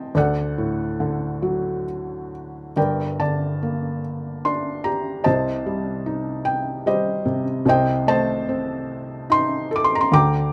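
A 3/4 pulse moves with free rubato between 65 and 76 BPM, giving this short excerpt of lyrical solo piano in G minor a tender, calm character. A felt-muted upright piano carries the whole piece alone from 0.0 to 10.5 seconds, spanning G1 to D6 and sitting up front with a soft, mellow, intimate tone. The sounds of the instrument's action are audible, adding to the close, detailed sense of the recording, which is wrapped in light reverb. A brief opening section rests on D before giving way at 2.8 seconds to a longer passage, where the harmony moves through Gmadd9 and Cm before settling on Adim/C. Taken from a longer classical piece, the fragment feels hushed and personal, as if heard from beside the keyboard.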